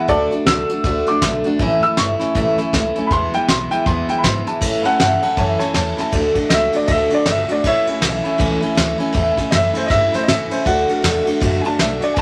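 Moderate club reverb wraps this rowdy, rollicking rockabilly swing fragment, where a polished, woody upright piano carries the melody and takes a solo from 4.6 s over an up-front, full-bodied picked steel-string acoustic guitar, thumpy gut-string pizzicato upright bass, and a soft brush drum kit with a fat snare, tight kick and dark cymbals.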